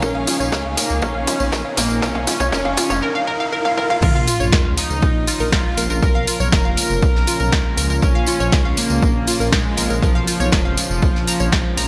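A punchy, tape-warm electronic kick sits up front in this dark, dramatic melodic techno excerpt, joined by a punchy analog drum machine with gated reverb on its snare, toms, hi-hats and crash, a very quiet loose indie kit with dark cymbals, and a jingly acoustic tambourine. The opening build-up is a filter sweep over a round analog pluck arpeggio and a smooth, detuned supersaw melody, with a riser and sub drop in the background and a rich, bowed symphonic string section with vibrato that ends at 3.0 seconds. At 4.0 seconds the drop lands with an impact, and the groove holds over a steady Bb minor chord. Beneath it, a menacing, saturated detuned saw bass evolves with a filter swell, while a lush, thick unison pad holds sustained chords in the background. Sidechain pumping moves the bass, pad, pluck, supersaw and strings, and digital delay trails the pluck and supersaw, all within a bright 1980s-style digital production with moderate plate reverb.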